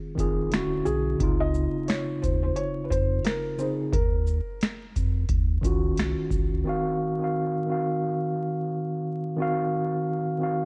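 A hazy, reflective lo-fi hip hop fragment with a swung feel, built on a mellow tine electric piano that sits up front with cassette-tape grit and a low-pass filter, playing from the start and carrying on alone after the bass and drums drop out at about 6.6 seconds. A round sine sub bass and a booming analog drum machine with a deep kick, tonal snare, metallic hats, finger snaps and shaker enter almost immediately. A soft, felt-muted upright piano adds a dark, intimate melody with audible action noise from 0.9 to 5.2 seconds. Light reverb and vinyl crackle give the whole a dusty, dulled sheen.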